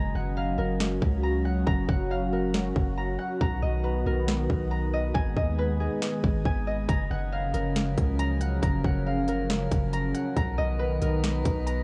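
A trap drum kit sits up front with a hard-clipped kick, a sharp snare and crisp hats, roughened by vintage 12-bit sampler grit, entering at 0.8 s in a half-time feel at 138 BPM. This dreamy, blissful stretch of atmospheric cloud-rap in F# major moves through F#maj7, Bmaj7 and G#m, with a long, sine-toned 808-style bass holding the low end up front with a fast attack and mellow decay. A dark, detuned analog pad sustains moody chords beneath, its chorus and sidechain pumping giving it a breathing quality, while a fingerpicked Celtic harp rings out arpeggios through tape echo. At 6.9 s a calm, glassy texture of drifting overtones slips into the background, bathed in chorus and its own reverb. Light digital ambience frames the whole passage, which is cut from a longer piece.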